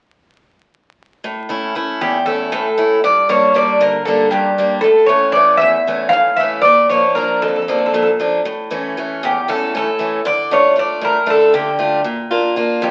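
Cool and moody, this Greek folk excerpt moves in a straight 7/8 at 233 BPM in eighths, set in A Phrygian dominant. A picked steel-string acoustic guitar enters at 1.2 seconds with a bright, boxy parlour tone, finger squeak audible as it accompanies from low in its register. The bouzouki joins at 2.0 seconds to carry the melody, its metallic double strings, some doubled at the octave, sitting up front and louder than the guitar. The harmony circles back to A between Gm, Bb and Dm. A wet studio reverb surrounds the pair, and the sound of a very old 78 rpm record, complete with vinyl crackle, gives the whole fragment an aged patina until it breaks off at 12.9 seconds.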